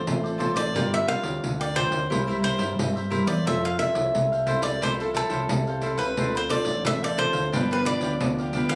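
A straight 4/4 pulse at 88 BPM drives this lively, playful slice of samba and choro, cut from a longer piece and tuned to A4 = 442 Hz. An up-front, crisp cavaquinho carries the melody from the start, its picked lines set in plate reverb, while a second cavaquinho joins with accompaniment at 0.2 seconds. A fingerpicked, classical nylon-string guitar supplies bright chords beneath, and a deep dub fingered electric bass gives a dark, round low end with a direct, amped tone. The acoustic pandeiro enters at 0.1 seconds, jingly and played with hard hands in a small-room sound. The harmony moves through Dm7, Gm7, C7 and Fmaj7 before returning to Dm7 and G7, all heard through a moderate studio reverb and a phone recording made in a room with club-like ambience.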